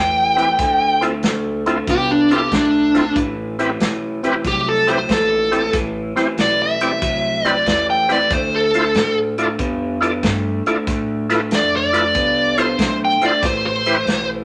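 Soulful and brooding, this electric blues shuffle in A minor at 93 BPM puts a dark, overdriven lead guitar solo up front over a slightly broken-up, lo-fi rhythm guitar riff soaked in spring reverb and a woody pizzicato upright bass, while a thick, gritty tonewheel organ with key click, percussive attack and slow rotary speaker joins at 0.4 seconds alongside a natural country drum kit with punchy kick and medium-tuned snare, as the harmony moves between Am7 and Dm7 in a moderate studio reverb in this short cut from a longer piece.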